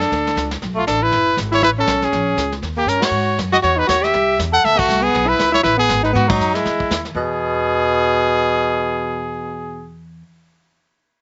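Small-group swing and bop jazz, relaxed and swinging, heard as a short cut from a longer piece at a brisk clip. A brilliant, forceful trumpet carries the melody up front with light vibrato and scooped notes, while a mellow tenor saxophone with a subtone and smooth top plays a second line beneath it, touched by a slapback echo. Pizzicato upright bass gives a woody, growly foundation, and a vintage brush kit of brushed snare, hi-hat, kick, ride and snare adds dark cymbals and a punchy kick until it stops at 7.3 seconds. A drum fill at 2.9 seconds leads into the first of several band accents, and the harmony moves through rich extended chords before settling on E as a new section begins at 7.2 seconds. The sound is dry and recorded outdoors, with a rolled-off top end that gives the whole recording a vintage feel.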